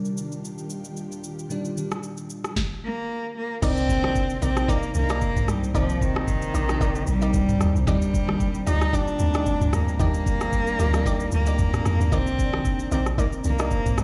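This soulful, deep amapiano piece sounds as if it is played through a big sound system in a bare room, with a large studio reverb and digital ambience. It opens on a lush, dreamy FM electric piano with a soft pad layer and chorus, over a very quiet, ethereal pad holding sustained chords, while a filter sweep runs through the introduction. An electronic R&B drum kit with a knocking kick and sharp snare sits up front, adding rim clicks, shaker, toms and crash cymbal to a lightly swung groove. At 2.8 seconds a rich, close solo cello takes the melody, bowed smoothly with vibrato and touched by delay. From 3.6 seconds a deep, round log drum bass arrives alongside a bright analog pluck playing stabs in the background, as the harmony alternates between Ebmaj7 and Cm9.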